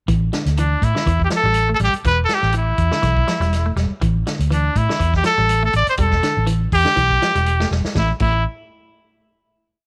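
A swung 122 BPM afrobeat groove in 4/4 sets a defiant, hypnotic mood as a punchy vintage drum kit with dark cymbals and a fill at 7.7 seconds drives a round, foam-muted fingered bass riff, while a clean semi-hollow guitar picks a phaser-tinted arpeggio ostinato in the background and a bright, up-front trumpet with vibrato states call-like motifs from 0.6 seconds over A5 and Em, all in a small room before a final chord at 8.0 seconds.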